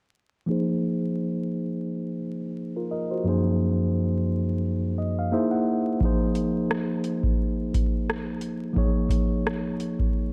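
Melancholic and hazy, this short lo-fi hip hop excerpt moves at 87 BPM in 4/4 with a 60% swing on the sixteenths. A mellow tine electric piano carries the accompaniment from 0.5 seconds, its clean, up-front tone heard through built-in speakers and shaped by a low-pass filter sweep, moving through chords such as Ab69, Gbmaj13, C7alt, Fm7 and Eb9sus4. The piano plays a fill from 4.6 to 6.0 seconds, just before a booming analog drum machine enters at 6.0 seconds with a deep kick, metallic hi-hats and rim clicks. The drums sound dry, tape-warm and up front. Light reverb and vinyl crackle colour the recording, and a break arrives at 10.1 seconds as the fragment closes.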